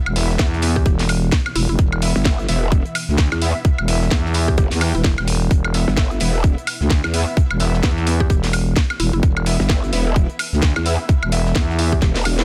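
A barely audible dark ambient pad, a thick growling FM bass with tube saturation and a garage drum kit with cracking snare and hi-hats open this bouncy, swaggering bass house cut in E minor at 129 BPM, swung on the sixteenths. A tight electronic kick sits up front, joined by bright orchestra-hit-like synth stabs with phaser and delay, a very quiet tight funk kit with a high-tuned snare, and a woody, round mallet-like pluck in the background from 0.8 seconds. An aggressive, wobbling detuned growl bass with overdrive enters at 2.2 seconds, the basses and stabs pump with sidechain compression in a dense, heavily limited, dry mix, and a drum fill arrives at 12.0 seconds.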